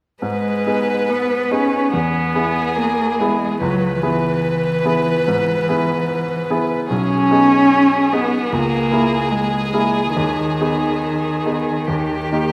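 Solemn and elegiac, this slow romantic movement for piano quartet unfolds in G# minor at 72 BPM with a pliant rubato, cut from a longer piece. A focused, vibrato-laden violin carries the melody above a rich, expressive cello second line marked by soft attacks and portamento, while a bright, brilliant baby grand piano supplies the accompaniment, with all three up front from 0.2 s to 12.5 s. A wet scoring-stage reverb surrounds the ensemble as the harmony moves from G#m through E and C#m7 toward a closing D# chord at 11.9 s.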